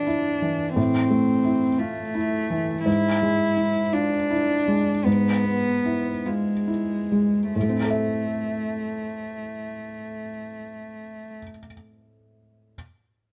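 Neoclassical piano and strings in a melancholic, reflective mood, this short excerpt in A minor drifts in a rubato 6/8 at roughly 46-58 BPM, slowing from 1.8 to 7.5 seconds, as a felt-muted upright piano, soft and intimate with audible action noise and short sustain, accompanies a close, dark cello played by a single player, bowed sul tasto with an airy tone and light vibrato, that carries the second line until 11.3 seconds, the two moving from Am to E/G# and back to Am under a light reverb.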